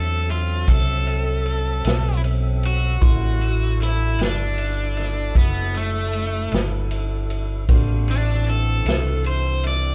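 A bright, overdriven, picked electric guitar solo opens this soulful, gritty slow blues in 12/8 at 51 BPM in D mixolydian over a D9 chord, joined at once by a round, up-front fingered electric bass, a fat tonewheel organ with key click, chorus vibrato and a slow rotary speaker, and a dark, boxy concert grand piano sitting in the background, while a vintage drum kit with punchy kick, medium-tuned snare and dark ride cymbal enters at 0.3 seconds, all captured as a band playing live in one room with light reverb in this brief cut from a longer performance.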